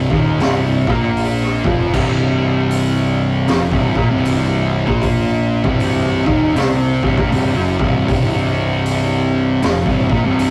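A thick fuzz guitar sits up front with added distortion, driving a heavy, ominous stoner and doom metal riff in C minor at 78 BPM with a swung 4/4 feel, joined by a second, very quiet fuzz guitar and a bright, double-tracked overdriven guitar playing the riff in the same low range. A growly, punchy fuzz bass with overdrive anchors the bottom from C1 to C2, while a raw garage drum kit enters at 0.1 s with a boomy kick, high-tuned snare, hi-hat and crash, its sound gritty and rolled-off in a small room. The whole thing, cut from a longer piece and resting on a single Cm chord, has the rough feel of a rehearsal-room take with saturated tone and moderate booth ambience.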